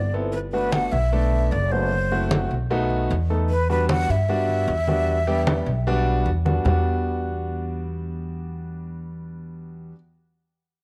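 A breathy, hollow flute carries the melody up front with vibrato and a soft attack in this driving, sultry Afro-Cuban jazz fragment in E minor at 152 BPM, cut from a longer piece. Woody pizzicato upright bass and a concert grand piano with deep lows and a cassette-tape colour sit forward beneath it, while damped, low-tuned congas played with soft hands stay in the background over a Gmaj9, F#m7b5, B7, Em9 progression. After the flute stops at 6.3 s, a new section begins at 6.7 s and the congas drop out at 6.8 s, leaving the bass and piano to carry it to the end, all set in a small room with light reverb and the vintage feel of a home cassette recording.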